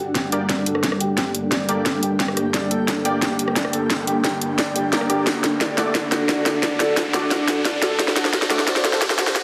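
Dark and mechanical, this excerpt of technical drum and bass in G harmonic minor runs at 176 BPM as one long build-up, with a drum fill and filter sweeps spanning its whole length and a background riser entering at 1.5 seconds as the harmony moves from Gm to D at 5.3 seconds. Up front, an overdriven drum kit with a cracking snare, bright hats and rim clicks drives over a knocking, overdriven kick set further back. Around them sit a deep, detuned sawtooth pad with chorus, a blurred granular cloud pad, a soft felt-muted upright piano playing filtered arpeggios through tape echo, and bold, nasal orchestra-hit-like synth stabs, the pads and piano pumping against the sidechain inside a dense, heavily limited mix with a small digital room.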